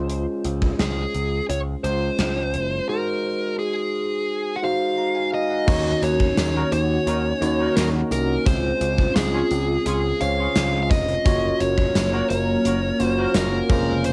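A cassette-recorded home recording with a wet booth ambience opens this nostalgic, romantic 1980s-style pop piece, cut from a longer work and moving at a relaxed 86 BPM in 4/4 with a straight feel in D-flat major. A bell-like tine electric piano, colored by phaser and tape, carries the accompaniment alongside a bright, direct picked electric bass, while a gated drum kit with bright cymbals, a medium-tuned snare and a tight kick sits up front almost from the start. A dark, smooth, overdriven lead guitar takes the melody at 0.8 seconds, its tone colored by cassette tape and trailed by analog delay. At 5.7 seconds the harmony shifts from Dbmaj7 and Ab7 toward Ebm7, Dbmaj7 and Gbmaj7, as a swirling, detuned sawtooth pad with phaser and chorus settles in the background and a very quiet, jingly tambourine joins. From 6.6 seconds a warm, distant, roomy horn section with light vibrato adds pop-style stabs, rounding out the polished, airy sound.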